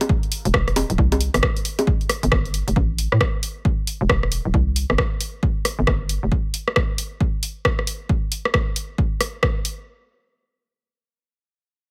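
This soulful, skippy two-step UK garage clip opens at 0.0 s with a house drum kit of bongos, hi-hat and rim click, its hats carrying a tape-warm glow, and an electronic kick joins almost at once. Both drum parts sit up front with a layered, produced character, and the kick lands with a punchy thump. At 0.5 s a hollow, knocking FM bass arrives, bouncy with a fast attack and a decaying tail, ranging from D1 to A2 and colored by tube saturation. It stays prominent until 6.3 s, after which the drums carry on alone. The groove moves at 135 BPM in 4/4 with a 62% sixteenth-note swing, and the whole clip sits in a digital ambience, tuned slightly sharp of concert pitch.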